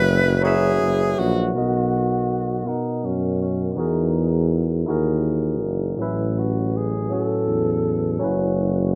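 A barely audible, shimmering chorused pulse-width pad glows for the first 1.5 seconds of this intimate, sensual slow six-eight R&B excerpt, while a breathy, close-miked tenor saxophone sings a jazz-style melody with vibrato and slapback echo over a bright, barky tine electric piano lightly overdriven through a combo amp and a mellow tuba bass with its own vibrato, moving through F#7sus4, Bmaj7, Emaj9#11 and A69 in a rough, low-pass-filtered home-demo mix with moderate studio reverb.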